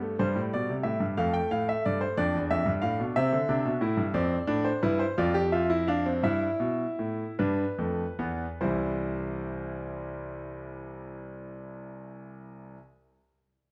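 A clear concert grand piano opens alone, set up front and close, with a natural tone, a deep bass and a long sustain. This is a lively, joyful baroque-style fugue in three parts, moving in a straight 6/8 and spanning from the low register up into the upper treble. The harmony passes through G, F and D minor before settling on C. From 3.2 seconds the pace gradually slows, leaning through G6/9 and G7 chords toward a return to C at 8.6 seconds, where a new section begins. A moderate recital-hall reverb surrounds the detailed, intimate sound, and the passage is cut from a longer piece.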